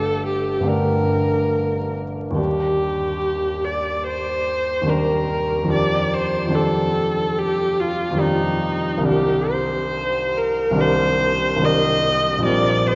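A church acoustic surrounds this recording, with a long, wet reverb, a vinyl crackle and a rounded top end that softens the air around the players. It is an impressionist classical duo for viola and baby grand piano, dreamy and luminous, moving in a free, rubato four. The single bowed viola carries the melody up front for the whole 12.9 seconds, its tone rich, smooth and even, with vibrato. The piano accompanies throughout from deep bass up into the middle register, sounding clear, intimate and natural, with long sustain and the noise of its action audible close by. Lush extended harmonies drift from Gmadd9 through Ebmaj7 and F13 to Cm9 at 9.1 seconds, and the passage is cut from a longer piece.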